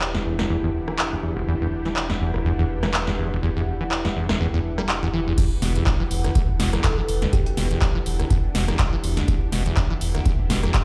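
This driving, gritty acid house cut opens with a squelchy, resonant sawtooth acid bass riff, thick with tube saturation and analog delay, over a round, dark analog bass, a punchy electro drum machine with metallic hats, claps, rim clicks and crashes, a lush phased string machine and a warbling, nostalgic lo-fi pad. The basses, strings and pad all pump against the sidechain. At 5.4 s the drop lands with a deep, up-front electronic kick and a very quiet, overdriven sampler-style kit with tambourine, while a gentle, tine-like pluck glints in the background at 6.8 s, all set in a large, reverberant studio space.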